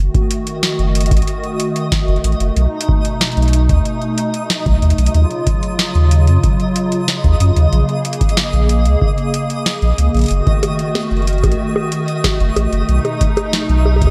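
A round, sine-toned sub bass sits up front in this melancholic, glitchy IDM excerpt, holding down the low end at 93 BPM in a straight 4/4 in F# melodic minor. Above it, a hollow, flute-like pad with a vintage, detuned warble sustains soft chords through an ensemble chorus, moving through F#m6, B7, D#m9 and A#m7 before returning to F#m6 and B7. A booming analog drum machine supplies crisp snare, metallic hi-hats and bongos through an analog delay, while a deep, tape-warm electronic kick anchors the groove. From 0.6 seconds a twinkling granular texture adds a bright, sparkling octave-up shimmer, sustained on a single high note and washed in its own reverb. Light digital ambience and heavy echoes give the whole mix an echo-laden space.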